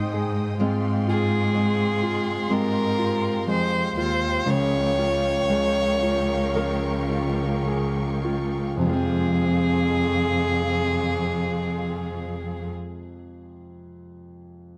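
In a straight, slow 4/4 that slows between 0.6 and 8.8 seconds, this melancholic, longing pop piece in F minor sets a bowed solo violin up front, expressive with vibrato, portamento and a soft attack, over a rich, smooth cello section carrying the bass. A clear concert grand piano with deep bass gives open accompaniment, while a dark fingerpicked steel-string acoustic guitar plays delay-touched arpeggios in the background and a lush, focused symphonic string section holds sustained chords. The harmony moves from Ab through Fmadd9/Ab and Db6 to Fm at 8.8 seconds, all in light small-room reverb, and the piano rings on alone until 14.8 seconds.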